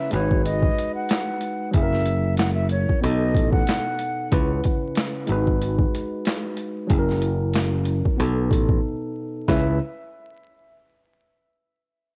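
A swung, head-nodding boom-bap groove rides on a gritty, pitched-down sampler kit with a thumpy kick, high-tuned snare, hi-hat and handclaps, overdriven and compressed and sitting up front beside a bright, growly picked electric bass. A worn, slightly out-of-tune tine electric piano carries the moody chords through a tape-hued haze, while a breathy concert flute with a soft attack sings a short melody until 4.3 seconds, dotted with analog delay. Vinyl crackle and a lo-fi cassette finish frame this excerpt, and a brief break at 8.8 seconds leads into a new section at 9.5 seconds, where the flute briefly returns.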